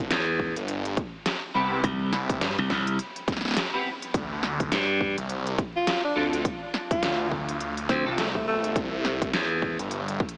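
Glitch hop with a playful, funky swing, heard as a short cut from a longer piece and bathed in a dreamy, reverb-soaked haze with vinyl crackle and a small-speaker tone. Two basses sit up front from the first moments: a thick, swirling detuned saw bass run through a phaser, and a bright, growly slap bass with a glassy, punchy edge. A tape-warm electronic kit of deep snare and crisp hi-hats, joined by a punchy layered kick, drives the groove under small room ambience. A clean, picked electric guitar adds very quiet stabs from 1.5 seconds, while the harmony moves from C to D7(no3) and back. At 5.8 seconds a breathy tenor saxophone takes a jazz-style solo with vibrato, soft attacks and scooped notes, trailed by tape echo until 8.8 seconds.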